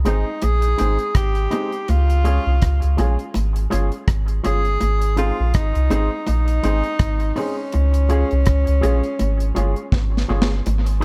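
Uplifting and warm, this roots reggae excerpt moves at 82 BPM in 4/4 with a swung sixteenth-note feel, cycling between Ab and Db chords. A deep, round, soft dub sub bass sits up front beside a dark, dry acoustic drum kit with a tight kick, a medium-tuned snare, rim clicks and hi-hat, treated with analog delay, which plays a fill from 9.9 to 10.7 seconds. A breathy tenor saxophone carries the solo melody with a mellow subtone, light vibrato and scooped notes, its echo trailing behind it. An electric guitar with an envelope filter adds clean, twangy, compressed accompaniment through tape echo, while a worn, woody, slightly detuned upright piano plays stabs in the background. Low-tuned bongos struck with hard hands fill out the percussion, and the whole mix is echo-heavy with a light reverb.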